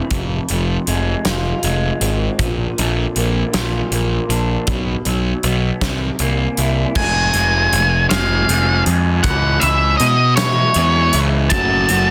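A twangy, lo-fi electric guitar through a small old amp opens this angsty, brooding alternative rock excerpt with phaser-and-slapback arpeggios at a slow 53 BPM in 6/8, joined at once by an up-front overdriven fuzz bass and a big-room acoustic kit with bright cymbals and a punchy kick, moving through Fm, Bb and C7. At 7.0 seconds a dark octave-fuzz lead guitar takes the melody high above as the harmony shifts toward C#m. At 11.5 seconds a thick fuzz guitar riff enters on F#m, all under a dense, heavily limited modern master with light reverb.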